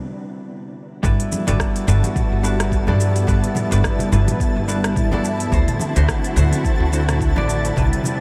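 A dark, clean hollow-body jazz guitar opens this sunny, swung chillout excerpt alone on a Cmaj9 chord, its picked, compressed tone trailed by tape echo. At 1.0 seconds a silky string machine with ensemble chorus, a woody pizzicato upright bass, a deep electronic kick and a deep house kit with smooth hats, rim click, shaker and toms arrive on Gmaj13, joined by distant, very quiet congas and, from 1.4 seconds, a twinkling granular shimmer glinting in the background. The chords move to D9, with the bass and kick sitting forward while a huge ambient reverb soaks the whole dreamy mix.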